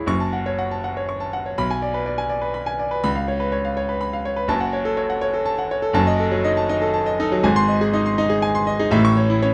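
A dark production with light reverb frames a clear, smooth, vintage-toned grand piano that sits up front with a short sustain. This stormy, agitated excerpt from a virtuoso classical piano study in F# minor moves in a rubato 3/4 at around 122 BPM, with the solo piano spanning F#1 to C#6 across its full 9.5 seconds. The harmony churns from F#m through diminished and dominant chords toward G# and finally A.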